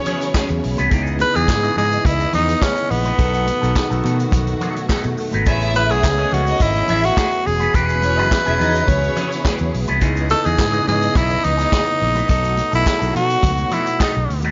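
A growling tenor saxophone leads this joyful, celebratory disco excerpt at 106 BPM in E major, sitting up front with a raspy, breathy edge, scooped notes and light vibrato in a punchy pop style. Beneath it, a vintage acoustic drum kit with a tight kick, medium-tuned snare, hi-hat and handclaps drives a straight 4/4 feel, joined by a punchy fingered electric bass from 0.5 s. A lush, woody string section holds sustained chords in the background while a mellow tine electric piano and a twangy, picked electric guitar through an envelope filter and phaser fill out the accompaniment. A smooth violin section adds a second line, briefly at the start and again from 5.5 to 9.7 s. High-tuned, damped congas and a grainy tube shaker sit very quietly underneath, all within a small room's light reverb and a rounded top end. The harmony cycles through E6/9, C#m9, B7 and Amaj9#11, giving the groove a rich, uplifting colour.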